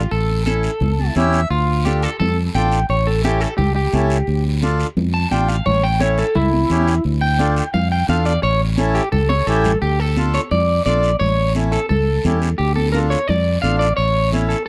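Danceable and passionate, this cumbia moves at a brisk 173 BPM in straight 4/4, centred on D harmonic minor and swinging between A7 and Dm before landing on A. Up front, a twangy, slightly broken-up electric guitar carries the melody with a clean solo over the first 9.8 seconds, coloured by spring reverb and slapback echo. Beside it sits a reedy, smooth accordion in accompaniment, slipping in a short fill around 0.8 seconds, while a round, dark fingered electric bass anchors the low end. Raspy guiro adds its texture, ringing, high-tuned congas played with soft hands sit further back, and a drum fill near 9.3 seconds ushers in a new section. The sound is dry and close, like a 1970s studio recording, and the clip is cut from a longer piece.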